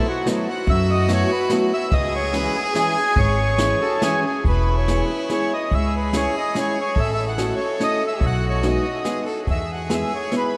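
A reedy, boxy accordion carries the melody up front in this whirling, nostalgic musette waltz, cut from a longer piece and set in 3/4 at 143 BPM with a rubato feel. Beneath it, a single violin plays a soft second line sul tasto, its airy bow and light vibrato giving an intimate, close presence. A fingerpicked acoustic archtop guitar with fresh strings fills in the accompaniment, and a jazz kit played with brushes enters at 0.3 seconds, bringing dark cymbals, a medium-tuned snare and a boomy kick. The upright bass joins at 0.7 seconds, plucked pizzicato with a woody, dark tone that sits prominently in the mix. The harmony opens in C# minor over B7sus4 and C#m, then brightens into E major at 4.4 seconds, passing through C#m, A6 and B6 before coming home to E. A huge, wet ambient reverb places the ensemble in a vast, echoing space.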